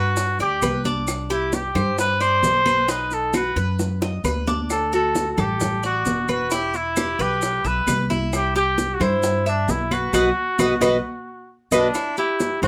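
A vintage-toned solo trumpet sits up front with light vibrato and scooped notes, carrying a pop-style melody between D4 and C5 through a plate reverb in this sultry, nostalgic fragment of Cuban son and guajira in E minor at 132 BPM. Beneath it, a metallic Cuban tres picks arpeggios on double strings, some doubled at the octave, while a thumpy pizzicato upright bass on steel strings anchors the low end from E1 to G2. Close-miked congas with a ringing, high-tuned sound struck with hard hands, round low-tuned bongos and grainy, mellow maracas join at 0.2 seconds, with woody claves following at 0.6 seconds. The congas, bongos and claves sit in the background, while the bongos, maracas and claves share a small-room sound. The harmony moves from G through Csus2, B, D, Em and C before returning to B and resolving on Em, with a drum fill at 3.8 seconds and a band accent at 10.1 seconds. The moderate studio reverb gives the straight 4/4 groove an intimate, warm glow.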